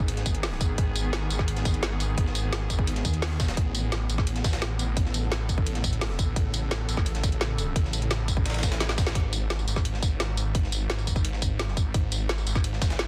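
Futuristic and tense, this dark technical drum and bass excerpt drives a snarling, growling distorted saw bass with tube saturation and sidechain pumping under a swarming, warbling granular drone that sits on G#m and Aadd9 until 9.1 seconds. Meanwhile a tight, up-front electronic kick, a drum and bass kit with a woody, soft-clipped snare and metallic hats, and a very quiet, gritty breakbeat sampler-style kit carry the drop through a drum fill that brackets a band accent at 9.1 seconds, all in a dense, heavily limited digital mix.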